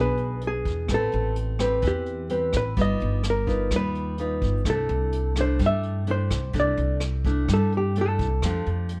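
A dry, close and detailed recording frames this breezy, sunny bossa nova excerpt in C major, moving at 128 BPM in a straight 4/4. A dark, clean, compressed hollow-body jazz guitar sits up front and takes the melody as a fingered solo in its upper register. Beneath it, a thumb-plucked nylon-string guitar with fresh strings comps through E7, Am9, G7alt and C69, arriving at F69 at 8.4 seconds, while a woody pizzicato upright bass anchors the low end and a vintage brush kit with a punchy kick, rim clicks and a rolled-off top enters at 0.2 seconds.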